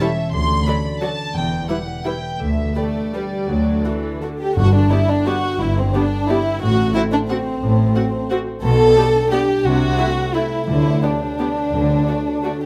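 An up-front, dark violin section carries the second line with vibrato and a soft attack in this elegant, sweeping orchestral ballroom waltz in 3/4, played with rubato and cut from a longer piece. Above it, a warm violin section sings the melody with light vibrato and an intimate closeness, while a rich, floating viola section fills in the accompaniment with a pure bowed tone, all three sections bowing sul tasto. A concert harp supplies ringing, fingerpicked arpeggios, and from 0.3 seconds woody cellos and smooth-topped double basses anchor the bass. Very quiet timpani played with medium mallets touch in at 4.6 seconds, as the second section begins, and return near the close from 10.7 seconds. A moderate stone room reverb gives the ensemble a resonant space as the harmony moves from D through Em and G toward a closing D.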